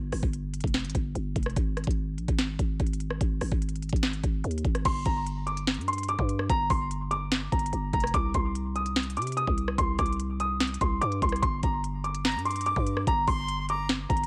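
Trap-leaning hip hop at 146 BPM in a half-time feel, this melancholic, dark excerpt in G phrygian opens on a break where a growling, buzzy 808-style bass joins an up-front electronic trap kit with knocking kick, sharp snare, crisp hats, rim clicks and crashes, the kit carrying a vintage 12-bit sampler grit. At 4.9 seconds a mellow, dark grand piano enters high in its range with short sustain, muffled by a low-pass filter and trailed by digital delay, over chords moving through Gm and Cm. Near the close, at 12.2 seconds, an airy silver concert flute adds a brief second line with vibrato and a slightly unsteady tone, echoed by its own delay, all in a dry, close-sounding space.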